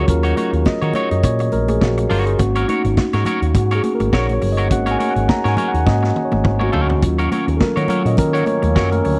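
Disco in Eb minor at 104 BPM with a driving, glamorous feel and a light 16th-note swing, led by a mellow, up-front tine electric piano solo over a round, dark envelope-filtered picked bass, a vintage drum kit with a punchy kick and high-tuned snare that plays a fill at 5.9 seconds, bright, damped congas in the background and a twangy, slightly broken-up guitar with spring reverb, before a tight woodwind section with light vibrato enters in the background at 7.0 seconds, all in a dry, close 1970s-style studio sound.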